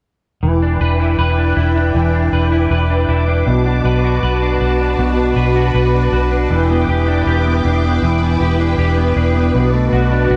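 This ethereal, hazy dream pop excerpt opens at 0.4 seconds with all three parts together: a string machine voiced as violas, a clean electric guitar and a vintage electric bass, all playing until 10.4 seconds. The string machine holds sustained chords with a soft attack and a sawtooth, vintage character, its moving notch and ensemble chorus lending the pad a gently shifting sheen. Up front beside it, the bright, picked guitar plays arpeggios soaked in ensemble chorus and dub echo. Beneath them, the foam-muted fingered bass sits low and round, dark and amped in tone. The chords alternate between Em7 and Bm7 in a straight 4/4 feel, and a moderate echo chamber reverb with a 2.0-second tail gives the echo-heavy mix its drifting, dreamlike space.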